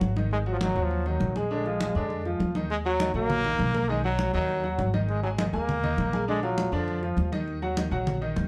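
A driving, straight 4/4 pulse at 201 BPM carries this passionate salsa passage in Eb minor, where thick-skinned, medium-tuned vintage congas and a woody pizzicato upright bass with steel strings underpin a bright, open baby grand piano with long sustain, while a brilliant, punchy solo trombone with vibrato sits up front from 0.3 to 7.3 s, the whole heard from further back in a moderate studio ambience.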